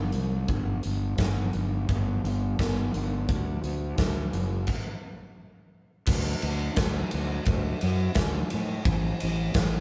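A fuzz-laden electric bass opens this brooding, driving classic rock passage, its growly, overdriven tone sitting up front as it moves through a low register. A big acoustic rock drum kit arrives almost at once, with a punchy kick, a medium-tuned snare, hi-hat, ride and bright crash cymbals ringing out in a large room. The groove is a straight, mid-tempo 4/4, and the two parts sound like a band playing live together in one space with a light touch of reverb. At 4.7 seconds the band stops, leaving a pause before a new section kicks in at 6.1 seconds. The fragment is cut from a longer piece and closes on that second section.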